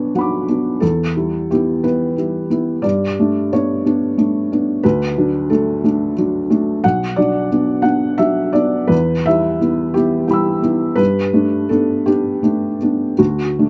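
Dry and close, recorded outdoors with little reverb, this 13.7-second fragment of melancholic, wistful neoclassical minimalist piano features a solo felt-muted upright tuned to A4 = 441 Hz, its soft, intimate, boxy tone carrying audible action noise as it drifts rubato in 6/8 at about 52-61 BPM through a repeating Bm, Em, Gadd9, D progression spanning B1 to E6.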